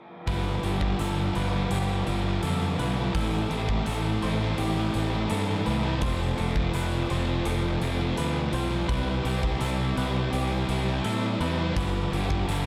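A dark, warm production frames this dreamy, blissful rock piece in shoegaze and dream pop style at 84 BPM. An up-front overdriven semi-hollow guitar riff soaked in reverse reverb and a thick, distorted fuzz guitar riff bathed in lush chorus sit over a growling, bright, overdriven fingered bass, while a polished gated 80s drum kit with a tight kick and hi-hat sounds in an airy big room. A compressed clean electric guitar plays arpeggios in the background through analog chorus and delay, all moving over a G7, Am7, F, Cmaj7 progression from 0.3 to 12.7 seconds.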